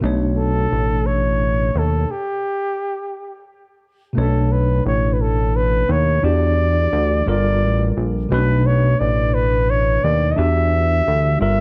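A worn, slightly out-of-tune tine electric piano and a fat analog bass open this late-night R&B excerpt in B minor, settling into a slow 6/8 at 58 BPM counted in dotted quarters with a straight feel. The bass sits up front with a thick, detuned sawtooth and square-wave tone, a fast-attack filter pluck and sustained, mellow notes, while the piano's clean chords sound as if heard through its own built-in speakers. A breathy flugelhorn enters at 0.4 seconds as the solo voice, whispered and intimate with a soft attack and jazz-style vibrato, carrying a yearning line over rich minor ninth chords. At 2.1 seconds the harmony breaks off into a stop, and from 4.1 seconds a new section moves through Bm9, Em9, Gm9 and Bm7 before returning to Em9. Light studio reverb gives the close, intimate performance a gentle sense of space, with the instruments tuned to A4 = 442 Hz.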